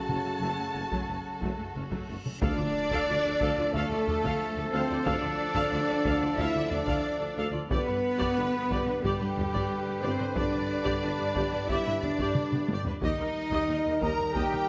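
A steady, straight 4/4 pulse at 90 BPM drives this relentless, dark cinematic orchestral excerpt in D dorian, where a close, dry taiko ensemble pounds beneath tight, mellow French horns and trombones carrying sustained chords under a distant, vibrato-laden violin melody with a clear second violin line and hollow, airy flute, while rich viola, cello, focused double bass and mellow tuba fill the depths. A huge reverse cymbal swells in at 2.0 seconds into an impact at 2.4 seconds alongside a brief timpani part, a warm solo trumpet adds stabs from there on, a drum fill lands at 12.4 seconds, chords move from F#m through Dm and G to Eb, and a wet scoring stage reverb surrounds it all.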